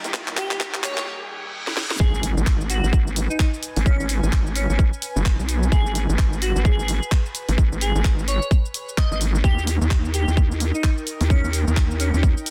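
A nasal, resonant vowel-sweep wobble bass with tube saturation and sidechain pumping anchors this bouncy, aggressive bass house excerpt in G# minor at 129 BPM with a swung 16th feel, where a tight, up-front electronic kick and a garage kit of cabasa, handclaps, warm hats and a cracking, soft-clipped snare drive the groove, an airy, dreamy lead with vibrato, tape colour and digital delay carries the melody from 0.4 seconds, a breathy, mellow pad and a biting symphonic string section sit in the background, and a riser and reverse cymbal build toward the drop at 2.0 seconds, where an impact lands in a dense, heavily limited mix.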